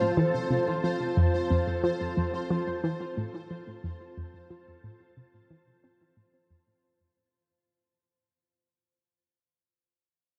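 Ambient, sequencer-driven space music with an expansive, luminous mood, built on a single Fmaj7 chord. A lush, vintage string machine holds sustained chords up front, a round, nasal analog pluck carries a low riff with chorus and delay, and a detuned, pulsing gated texture hums on a single high note. A ringing, fingerpicked Celtic harp plays arpeggios through analog delay in the background and continues alone after the other parts stop at about 6.8 seconds, while the whole passage fades out inside a huge, dark reverb.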